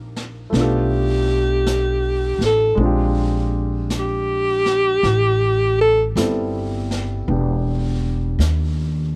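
Romantic and late-night, this excerpt is a slow jazz ballad at 54 BPM in 4/4 with a swung feel, heard in a small room. A clear, up-front alto saxophone carries the solo melody from 0.6 to 6.0 seconds with a soft attack, vibrato and scooped notes. Beneath it sit a woody pizzicato upright bass and a natural-sounding baby grand piano moving through chords such as Ebmaj9 and Bb13, while a distant, roomy brush drum kit with a rolled-off top enters at 0.2 seconds on brushed snare and hi-hat.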